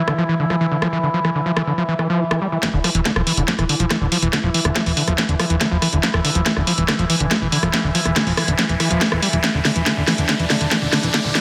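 Psychedelic trance at 141 BPM in an intense, psychedelic mood, cut from a longer piece, where a squelchy, gritty overdriven acid bass riff with dub echo and a slow-attack, ring-modulated drone with moving overtones pump against the sidechain from the start alongside an up-front garage drum kit with a cracking snare and warm hats, until at 2.6 s a tight electronic kick arrives, followed a moment later by a punchy, funky, wave-folded plucky analog bass on E1, as the chords shift from Dmadd9 to E7(no3) and a drum fill drives a build-up, joined at 5.5 s by a very quiet riser, all inside a moderate digital room reverb and a dense, heavily limited modern master.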